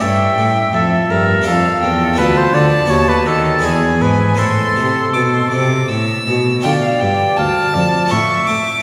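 In a straight, flowing triple metre, this introspective baroque-style sonata movement, cut from a longer piece, sets a rich, expressive bowed violin melody with vibrato and portamento above a soft-attacked, smooth-topped oboe second line with light vibrato, while a close-miked, dry, full-bodied Italian-style harpsichord with two sets of strings plucks the accompaniment and an up-front solo cello, bowed with vibrato and portamento, carries the bass, all within a lingering church reverb.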